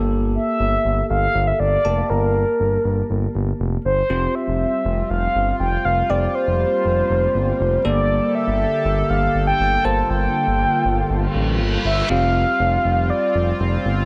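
A mellow, horn-like synth lead carries the melody in this 120 BPM synth-pop passage, its round, soft-attacked tone sitting up front with vibrato, chorus and delay from 0.3 seconds onward. Beneath it, a smooth gliding synth bass holds the low end with sustained, portamento-connected notes, while a bell-like tine electric piano adds bright, clean accompaniment treated with phaser. At 4.1 seconds a shimmering, retro pulse-width pad enters with slow-attacking, detuned sustained chords that give the texture an evolving, chorused sheen. Harmony moves between Gmadd9 and Fsus2 in a straight 4/4 feel, and a brief electronic reverse cymbal at 11.3 seconds leads into the closing stretch at 12.1 seconds. Light reverb and digital ambience frame this nocturnal yet driving fragment of a longer piece.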